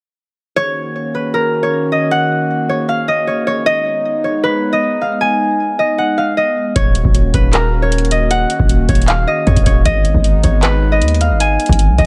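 A fingerpicked concert harp carries the ringing melody of this eerie, menacing trap excerpt in Eb minor at 155 BPM with a half-time feel, its delayed lines floating over a hollow, flute-like pad with chorus that holds Ebm7 and Abm chords in a dry, close space. At 6.8 seconds a booming analog drum machine with a deep kick, metallic hats and handclaps arrives alongside a punchy, heavy 808-style bass, the drums carrying a gritty vintage 12-bit sampler texture.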